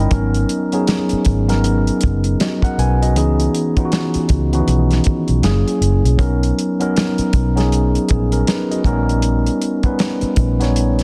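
A dense, heavily limited modern master with studio reverb frames this short, sensual excerpt of neo-soul R&B, cut from a longer piece and sitting up front at a relaxed 79 BPM in B major with a 16th-note swing. A mellow, clean tine electric piano carries the accompaniment from the first moment, spanning D#3 to B5 with a direct, warm tone. Beneath it, a vintage fingered electric bass, foam-muted and round with an amped, dark character, holds the low end between F#1 and C#2. The soul drum kit enters at 0.1 seconds, dry and smooth with a rolled-off top, pairing a tight kick and medium-tuned snare with hi-hat. The harmony drifts through lush extended chords, moving from G#m11 to C#m9, F#9 and Bmaj7 before settling on a D#7b13 over A# near 8.8 seconds, giving the passage a relaxed, lingering feel.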